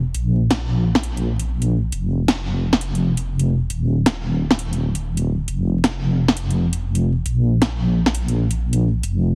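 UK garage in its two-step form, this short excerpt cut from a longer piece moves at 135 BPM in 4/4 with a swung sixteenth-note feel that gives it a soulful, bouncy character. A deep, soft wobble bass holds down the low end between Eb1 and Bb1, its detuned sawtooth and sine tones blended into a dark, warm sound with a fast attack and sustained, compressed notes thickened by chorus. Sitting up front alongside it, an electronic, layered garage drum kit brings a cracking snare and metallic hi-hats, given a tape-warm character and a touch of small room ambience. The bass sounds from the opening instant to 9.3 seconds, while the drums arrive at 0.1 seconds and stop at 9.1 seconds. Overall the mix is dry, squeezed into a heavily compressed radio-like sound with a layer of vinyl crackle.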